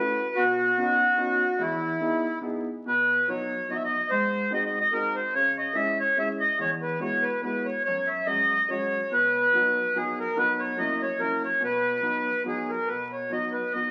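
A swung waltz lilt in three carries this nostalgic, charming musette piece, cut from a longer performance. A reedy, full accordion with a slow beating in its tone leads the melody, close-miked, dry and up front. Beneath it, a woody, open upright piano plays the accompaniment from start to finish at a lower level, set in a moderate large-studio reverb and heard through the crackle of a very old 78 rpm record.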